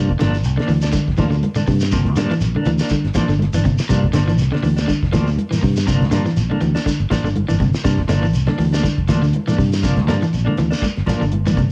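A fingered electric bass sits up front as a slightly broken-up electric guitar picks arpeggios and a clean, fingered electric guitar adds stabs through tremolo, tape echo and plate reverb, joined almost at once by a dry, dark 70s drum kit with fat snare and tight kick, soft-handed ringing congas and a grainy, distant shekere, circling a single Gm7 in a hypnotic, intense afrobeat groove cut from a longer piece and captured as a lossy home cassette recording in a small room.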